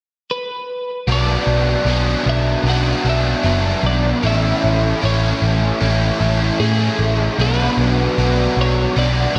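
Drenched in a lush hall reverb with a long 2.8-second tail, this dreamy rock excerpt feels hazy and wistful, moving at a straight, unhurried 76 BPM in 4/4 and tuned to A4 = 441 Hz. A bright, clean twelve-string electric guitar opens the excerpt at 0.3 seconds, carrying the compressed melody and trailing off into a diffuse ambient delay. At 1.1 seconds the band arrives together: a biting, overdriven guitar, double-tracked and up front, drives a picked riff colored by analog chorus. Alongside it, a vintage foam-muted electric bass plays with a dark, round, amped tone, sitting just as close in the mix. The harmony moves from Bm to Amaj7 at 4.2 seconds and back to Bm, giving the short passage a gently yearning, suspended quality.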